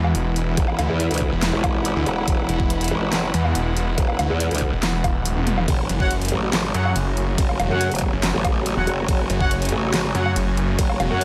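This heavy, menacing half-time wobble dubstep passage at 141 BPM in F# minor opens on a snarling, detuned saw bass, an overdriven dubstep kit with a huge snare, a morphing wavetable pad with chorus, and a rich bowed string section with vibrato sitting in the background. At 0.6 seconds a growling, wobbling formant bass joins up front alongside a knocking electronic kick, and the pad and strings pump under sidechain. The kick drops out at 5.3 seconds, a drum fill follows at 5.4 seconds, and the harmony moves from E to F#m at 5.7 seconds. At 6.0 seconds clear, classical-style brass stabs with digital delay enter, adding to the chaotic weight.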